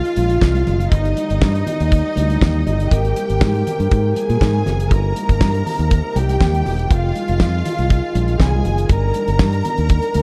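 A damped 70s drum kit with a fat snare and tight kick sits up front in this sultry, driving disco passage at 120 BPM in F dorian, joined from 0.2 s by a round, up-front fingered electric bass and very quiet, distant congas, while a lush, biting string section with vibrato and tape echo carries a second line over sustained chords from a classical-style French horn section, moving through Fm7, Abmaj9 and Cm7/G in a dark, warm production with light reverb.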